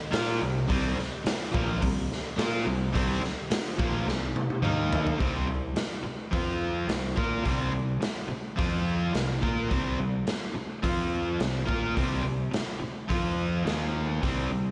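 A very quiet, mellow string machine with a sawtooth cello tone holds sustained chords at the start of this brooding, swaggering classic rock excerpt in C minor at 106 BPM until 5.2 s, as a bright, scooped distorted electric guitar riff up front sits over an overdriven, hollow-body semi-hollow guitar riff in the background, a round, fuzzy picked bass and a gritty, up-front garage drum kit with a punchy kick, which plays a fill from 4.1 s before the power chords move between C5 and F5 in a big arena sound with concert hall reverb.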